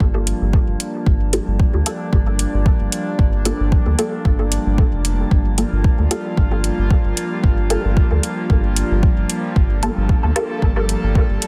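Meditative and hazy, this dub techno excerpt moves at 113 BPM in 4/4 with a light swing on the sixteenths, resting on a single Gm9 chord in G minor. An up-front electronic kick drum, deep and tape-tinged, anchors the groove from the start, joined at 0.3 seconds by metallic electronic hi-hats, both touched with studio reverb. Beneath them a soft, round dub sub bass with a hint of tube saturation holds the low end, pumping under sidechain compression alongside an airy, breathy pad that breathes through slow-attack sustained chords with chorus. From 1.3 seconds a muted, detuned chord stab enters, its filter sweeping across the whole passage while phaser and dub echo smear its short plucks. Far back in the mix, an eerie, warbling FM drone on D4 adds an inharmonic shimmer, while the overall room stays dry and close.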